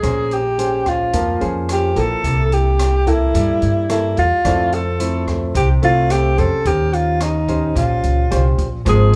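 Bossa nova excerpt at 109 BPM with a sunny, sophisticated mood, in which a breathy, up-front alto saxophone carries the melody with vibrato and scooped notes over thumb-plucked nylon-string guitar with audible finger squeak, a woody, thumpy pizzicato upright bass and an open jazz drum kit of hi-hat, rim click and boomy kick, while a warm baby grand piano sits in the background until 6.7 s and a dark, whispered trombone slips in very quietly at 8.9 s, the band playing live together in one room with light reverb.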